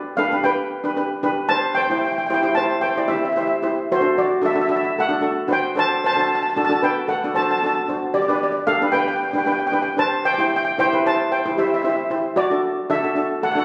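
A lead steel pan carries the melody in this sunny, bouncy calypso, its mellow, soft tone coming from soft rubber sticks and sitting up front from the first second. Beneath it, a double seconds pan played with medium rubber sticks supplies the accompaniment, slightly lower in level, and both pans ring with a metallic, shimmering character throughout the 13.6 seconds. The harmony cycles through Gadd9, C and D over a straight, even 4/4 feel, giving the passage a light, open lilt. The playing sits in a wet recital hall, its long reverb tail blooming around the notes, and the sound carries the dulled, compressed quality of a phone capture in the room, with the highest frequencies rolled off. The clip is cut from a longer piece.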